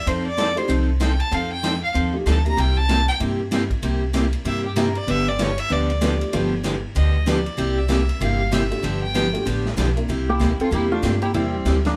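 This short live-in-one-room recording has a moderate small-room ambience, with a picked acoustic guitar, upright bass and hollow-body jazz guitar sitting up front while the drum kit sounds distant and roomy. It's cheerful, swinging western swing country at 192 BPM in 4/4, cut from a longer piece and moving through F9, C9 and G9 chords in C mixolydian. A clear, biting fiddle with light vibrato and an earthy bowed tone takes a solo from the start until 10.1 seconds. Beneath it the bright, full-bodied jumbo acoustic guitar and a dark, mellow upright piano, slightly detuned with audible action noise, fill in the harmony. A woody, thumpy gut-string upright bass plucks the low end, and the big-band kit swings on hi-hat, ride, a medium-tuned snare and a boomy kick. At 10.3 seconds, just after the music shifts back to C9, a dark, clean, compressed hollow-body jazz guitar enters with the melody.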